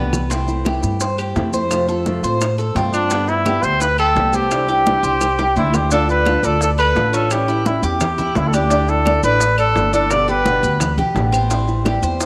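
A straight 4/4 pulse at 172 BPM drives this danceable, relaxed Cuban son and guajira in C major, cut from a longer piece. The percussion sits behind the band: ringing, high-tuned congas play close and dry in the background, round, low-tuned bongos have a vintage, band-limited tone, woody claves sound from a small room, and grainy, mellow maracas are heard close up. Up front, a dark, growly pizzicato upright bass with steel strings gives a thumpy low end. A picked Cuban tres plays metallic double-string arpeggios with some octave-doubled strings, and a small, fingerpicked nylon-string guitar adds accompaniment. A solo trumpet enters at 2.9 s with a warm, punchy, pop-style vibrato tone that sounds distant and roomy yet stays up front, and it carries the melody until 10.9 s. The harmony moves from C6 through F, Gadd9 and Cadd9, then a drum fill at 5.2 s leads into a second passage on Dm, A7, Dsus2, G and Am7. 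A moderate plate reverb gives the mix its space.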